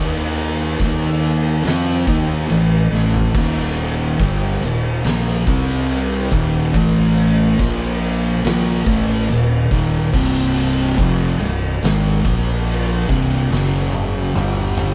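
Hypnotic and sludgy, this stoner and doom metal excerpt sets two dark, distorted fuzz guitars on a heavy picked riff, one sitting in the background, over a growly, overdriven fingered bass placed up front, while an oversized low-tuned drum kit with a punchy kick, fat snare and gloomy cymbals joins at 0.4 seconds and adds fills at 2.9 and 13.5 seconds, the whole band playing live in one stone room that lends a moderate reverb.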